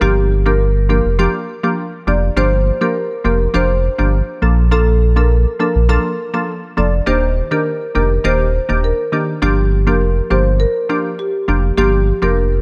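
A light reverb and small room ambience frame this mellow, hypnotic afrobeats clip in G minor at 102 BPM, cut from a longer piece and moving from Gm7 through Bbmaj7 and Ebmaj7 before returning to Gm7 at 9.4 seconds. A deep, full sub bass with an added octave sits up front, while a glassy, crystalline wavetable pluck with a nasal edge, a noise layer, a filter sweep and chorus carries the accompaniment. A woody rosewood marimba played with medium mallets sings the melody through tape echo until 12.3 seconds.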